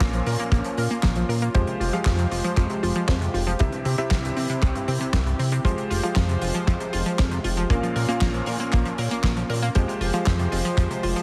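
A tight, dry kick drum drives this bittersweet, danceable italo disco excerpt at 117 BPM in F harmonic minor. Playing alongside it from the start are a glossy, saturated chorused synth bass with pulse-width movement and a damped 70s kit whose fat snare, hi-hat and handclaps sit in studio reverb. An analog pluck spins bright, detuned sawtooth arpeggios through chorus, digital delay and shimmer reverb, while a vintage electric grand piano with clangy bass adds background stabs and a smooth, slow-attack analog pad holds chords beneath, all cycling through Bbm, Fmadd9 and C within a heavily compressed radio sound.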